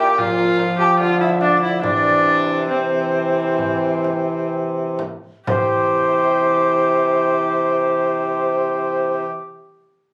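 Courtly and stately, this short cut from a longer renaissance-style consort dance in C mixolydian moves in a straight 4/4 at roughly 61-76 BPM, slowing over its first 5.5 seconds as the harmony shifts from Bb to C. An airy, hollow alto recorder carries the melody with vibrato from a distance, while a close, nasal viola with a gut-string tone plays an up-front second line, a roomy bassoon anchors the bass, a smooth-topped trombone adds soft accompaniment, and a small, bright frame drum played with soft hands taps along until 5.9 seconds. Captured on a phone in a club-like room with light reverb, the sound has an intimate, live quality.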